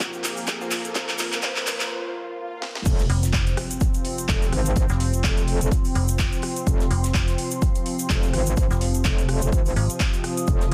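Aggressive and bouncy, this bass house clip builds with a riser, filter sweep and drum fills over a sweeping resonant pad, a deep dark ambient pad, a tube shaker, a punchy layered kick, a house kit with cracking snare and metallic hats, and a brief orchestra-hit-like synth stab at 0.6 seconds. It then drops at 2.9 seconds with an impact into a saturated metallic wobble bass, joined moments later by a digital FM bass, both up front with sidechain pumping, over a very quiet, dry 70s drum kit, all in a dense, heavily limited master.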